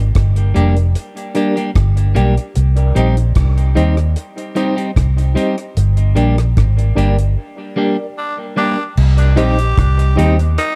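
Spacious and hypnotic, this short cut of C minor dub reggae at 75 BPM rides a round, foam-muted fingered electric bass up front and a dry, dark drum kit of tight kick, hi-hat, rim click and crash, while a clean, scooped electric guitar comps and a reedy electric piano with fast tremolo plays stabs, both soaked in dub echo over Gm and Cm in an echo-heavy mix; a band accent and break arrive, with a raspy, growling tenor saxophone line entering at 8.2 s during the break, and very quiet, distant low-tuned bongos appear at 10.2 s.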